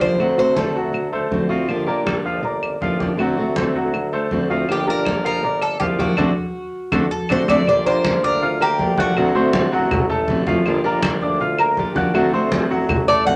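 An up-front, metallic Cuban tres with double strings carries the picked melody in this sultry excerpt of Cuban son and guajira, playing its longest phrase from 4.7 to 10.1 seconds. At 161 BPM in G minor, a brilliant grand piano spins long-sustaining arpeggios and a fingerpicked steel-string acoustic guitar adds warm accompaniment over alternating D7 and Gm7 chords, while a clear tuba with vibrato holds the bass in the background. Bright, thin-skinned congas sound distant, woody claves bring a vintage, band-limited tone, and the band hits an accent at 6.2 seconds, all within moderate small-room ambience.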